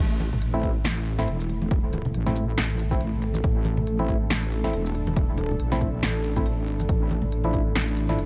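A saturated, detuned wobble bass opens this heavy, dark half-time dubstep excerpt at 0.0 seconds, sitting up front with a chorused sawtooth tone, while a moody, full-bodied analog pad with a slow attack and long release settles in beneath on sustained chords. Layered, punchy electronic drums bring a punchy snare, smooth hi-hats and a shaker, with a separate kick entering at 0.6 seconds, and close acoustic congas murmur in the background. A hollow, organ-like percussive stab with chorus and dub echo decays through the swung groove as the harmony shifts from A minor to D minor add nine at 6.9 seconds.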